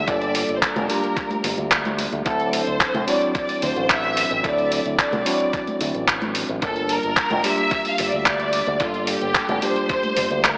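A lush, bowed violin section with vibrato and a soft attack carries the melody from the start, trailed by tape echo, over a tine electric piano with vintage sampler grit, sidechain pumping and dub echo, and a punchy fingered bass through an envelope filter, in a sensual, cosmic nu-disco groove at 110 BPM in G dorian, moving from Gm7 to D7 at 2.3 seconds and back. From 0.1 seconds a dusty, gritty sampler-style kit with handclaps and hi-hat sits up front alongside a thumpy electronic kick, both re-recorded in a large room, while congas with dub echo enter in the background at 0.8 seconds. The whole excerpt is soaked in a wet spring reverb and an echo-heavy mix with an AM radio sound, and it is cut from a longer piece.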